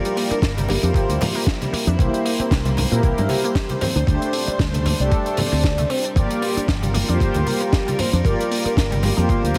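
A bright, fingered electric bass run through an envelope filter and tube saturation anchors this groovy, sensual nu-disco excerpt, playing from 0.3 seconds alongside a gritty, thumpy sampler-style kick drum that joins at 0.4 seconds. The track moves at 115 BPM in 4/4 with a 55% swing on the sixteenths, sitting in G dorian over a Gm7, C7, D7sus4 and back to Gm7 progression. A tight acoustic funk kit with a high-tuned snare and hi-hat adds a mid-forward edge, while hard-handed, saturated congas enter at 0.6 seconds in the background. A mellow sawtooth analog pad with chorus and a slow attack supplies the accompaniment, and an intimate chamber violin section holds bowed sul tasto chords with light vibrato, both pumping through sidechain compression. Further back, a detuned, wave-folded unison pluck spins punchy arpeggios through digital delay, and a round, dark octave-layered synth lead carries the melody with chorus, phaser and delay. 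The mix has a small-room ambience with light reverb and a heavily compressed, radio-like sheen.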